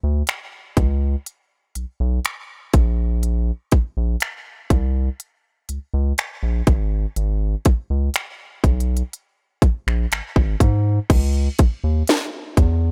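A deep, round analog bass opens this sensual, longing contemporary R&B excerpt at a slow 61 BPM, soon joined at 0.3 seconds by an up-front electronic trap kit of hard-clipped kick, sharp snare, crisp hi-hats, finger snaps and crash cymbal, the dark, sustained bass ranging from G#1 to G#2 in a dry, close mix that shifts into a new section at 11.1 seconds.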